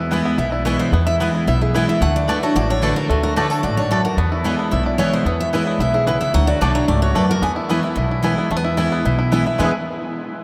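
A picked dreadnought guitar, a fingerpicked bluegrass banjo and a pizzicato upright bass start together in this joyful, virtuosic bluegrass excerpt, racing along at 222 BPM in a straight 4/4 in E mixolydian, with the harmony swinging between E and D. The accompaniment guitar sounds bright and full-bodied on fresh strings, with audible finger squeak, while the banjo's twangy, percussive arpeggios ring through and the bass adds a woody, warm low end. A mandolin sits in the background with double-string stabs. At 0.4 seconds a second picked guitar, up front and bright, takes the melody, carrying it until 7.5 seconds before a brief return at the very end, after a short new section has arrived at 8.5 seconds. The whole band plays in a vast, echoing cathedral space with a long, wet reverb.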